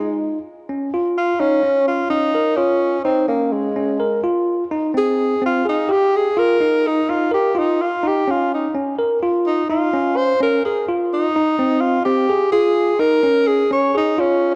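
A home cassette recording with a wet spring reverb gives this short progressive instrumental cut a tape-worn sheen. It moves at 253 BPM in eighths, in a straight 7/8 that feels bright and driving, and it sits in Db lydian with the tuning set slightly low, at A4 = 439 Hz. A bell-like, clean tine electric piano plays arpeggios up front through the whole clip, over a harmony that opens on Dbsus2 and moves among Db, Ab6 and Eb. From 0.9 seconds to 14.2 seconds, a breathy tenor saxophone takes a jazz-style solo, also up front, with vibrato, subtone and scooped notes. The saxophone carries the melody across a span from Ab3 to Db5, and it sits a touch louder than the piano.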